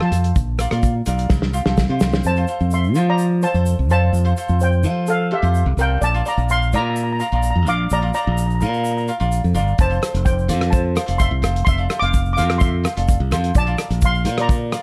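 A straight 4/4 calypso groove sets a sunny, carefree mood in this short cut, where a shimmering, airy steel pan carries the lead up front over crisp picked cavaquinho, a growly, bright fingered electric bass and a grainy egg shaker in the background, while a dry, tight-kicked soul drum kit plays a fill before dropping out at 2.2 seconds and returning at 9.8 seconds, with light reverb in a dark mix.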